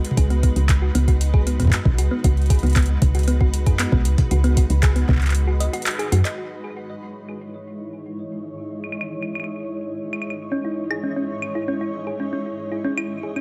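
A cloudy, evolving granular pad, a tine-like thumb-piano synth pluck playing arpeggios, and a booming analog drum machine with metallic, tape-warm hats, claves, handclaps and toms open this melancholic, eerie IDM excerpt in C# minor at 116 BPM. A soft electronic kick and a woody, round FM bass sitting up front join almost at once over a G#m7 chord, while the pluck's mellow tone carries chorus and tape echo, and the drum machine's low-passed hits trail off in dub echo. The kick and bass fall away around a break at 5.3 seconds, which carries a band accent. At 6.4 seconds the harmony moves to C#madd9 and a filter sweep runs across the drums as the blurred, detuned pad holds on. The pluck drops out briefly and returns at 10.5 seconds, all within an echo-heavy mix of light reverb and digital ambience.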